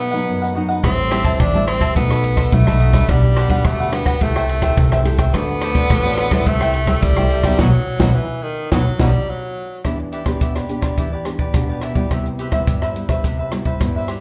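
Bittersweet yet lively, this excerpt of samba and choro moves at 106 BPM in a straight 4/4 feel in E minor, captured live in a small club through the venue's PA with a roomy reverb. An edgy, forceful tenor saxophone carries a jazz-style second line with vibrato and scooped notes, sitting present in the mix with a slapback echo until it drops out at 9.9 seconds. Beneath it, a crisp, mellow picked cavaquinho and a dark, full-bodied fingerpicked nylon-string guitar with old strings share the accompaniment, both touched by the same slapback echo. A woody pizzicato upright bass on steel strings enters at 0.8 seconds and stops at 9.1, while a compact cocktail drum kit, dry and up front with dark cymbals, a high-tuned snare, rim clicks and a punchy kick, plays from 0.8 seconds to the end. The band hits an accent on a B chord before the music turns to a second section of Em7 and Cmaj7 chords carried by the guitars and drums.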